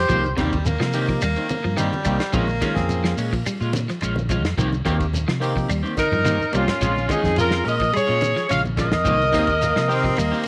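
An up-front horn section carries the melody in this driving, funky afrobeat excerpt at 107 BPM in 4/4, sounding briefly at the start and then returning at 6.0 seconds, just as a drum fill lands, with a bright, present alto saxophone playing a second line. A breathy, distant baritone saxophone adds its own roomy second line near the opening, drops out at 3.5 seconds and comes back at 9.3 seconds. Underneath, a round, punchy fingered bass and a dry, dark soul drum kit with a tight kick and dark cymbals keep the groove moving, while low-tuned congas, a grainy shekere and faint woody claves fill in the percussion. In the background, a clean picked guitar plays arpeggios through analog chorus, a twangy, slightly broken-up guitar adds chorus-soaked stabs, and a barky, lightly overdriven tine electric piano supplies accompaniment. The harmony alternates between Cm7 and Bbm7, and the whole band sits in a small room with light reverb.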